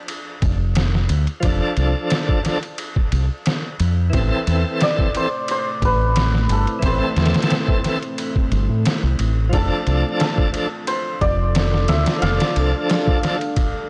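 Cinematic and melancholic, this trip hop fragment moves at 89 BPM in 4/4 with a light 53% swing on the sixteenths, drifting from F6 to Am and back to F6. Sampler-style drums sit up front, compressed and pitched down, with a muffled, thumpy kick, a medium-tuned snare and ride cymbal in a small room ambience, while a dark, round fingered electric bass anchors the low end just as prominently. At 1.4 seconds a bright, shouting tonewheel organ joins as accompaniment, lightly overdriven through a fast rotary speaker with tremolo, a low-pass filter and tape echo. A hammered santur carries the melody from 4.8 seconds, its shimmering, ringing tone trailed by dub echo, and at 5.3 seconds a deep, moody ambient pad adds sustained detuned sawtooth chords with a sub octave, slow attack, chorus, built-in reverb and 12-bit sampler grit. The overall sound is dry and gritty, coloured by transformer saturation and a bed of vinyl crackle.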